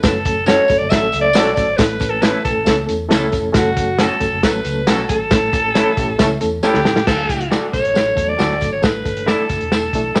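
Moderate studio reverb surrounds this uplifting, danceable excerpt of uptempo 1960s-style soul at 136 BPM in A mixolydian, where a raspy, gritty alto saxophone leads up front over a reedy electric piano with fast tremolo, a dark, foam-muted fingered bass, a muffled, lo-fi soul drum kit with a fill at 6.6 seconds, and a jingly tambourine in the background, while a very quiet, ringing soft-mallet vibraphone adds a second line until 6.4 seconds, a mellow horn section with octave doubling adds another, and a slightly broken-up electric guitar through a small old amp plays stabs with spring reverb from 0.5 seconds.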